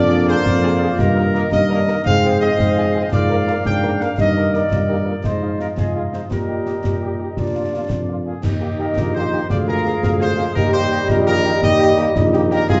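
Heard from further back in a reverberant large studio with a softened top end, this rousing, festive military-style march for wind band in 6/8 sets a warm trumpet section on the melody over a mellow tuba bass, with a punchy euphonium with vibrato and a distant woodwind section carrying second lines, a very quiet trombone section holding sustained chords, a vintage-toned French horn section accompanying in the background, and concert snare drum, concert bass drum and clash cymbals with dark cymbals sitting close and up front.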